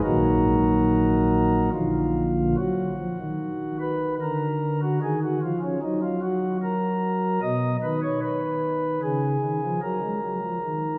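A rubato 3/4 at 74 BPM sets a grave, solemn tone for this short classical chorale-style passage in E-flat minor, cut from a longer piece and tuned slightly high at A4 = 441 Hz. A lone pipe organ on soft flute stops plays throughout, up front and romantically voiced, ranging from Bb1 to Eb5 as the harmony moves from Ebm/Bb through Bb, a brief unharmonised moment at 4.2 seconds, and Abm/Cb before settling back on Ebm. A wet church reverb with a 2.8-second decay surrounds the playing, and a faint mains hum sits underneath.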